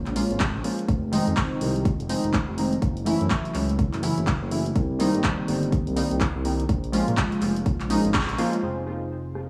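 Smooth and warm, this deep house excerpt rides a swung groove as round analog key stabs with chorus, a filter sweep and a diffuse ambient delay pump against the sidechain over minor-seventh chords. A sustained sawtooth synth bass with vibrato pumps beneath them, while a tape-warm analog drum machine supplies handclaps, rim clicks and low-pass-filtered hi-hats. A layered, punchy electronic kick drives from 0.4 to 8.3 seconds, the band hits an accent at 8.1 seconds, and a plate reverb soaks the whole mix in a dreamy haze.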